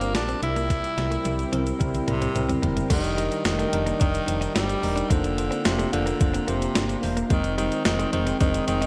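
A bright 1980s-style digital production with moderate plate reverb frames this nostalgic, uplifting pop excerpt at 109 BPM, where a raspy, up-front tenor saxophone with digital delay carries the melody over bell-like tine electric piano in lush chorus, an ethereal pad, a quiet direct-recorded clean guitar riff, punchy FM bass, a grainy egg shaker and a clean 12-bit drum machine with gated reverb that plays a fill from 0.7 to 2.9 seconds before the chords move through Ebmaj7/F, Bbadd9/F and Ab/F.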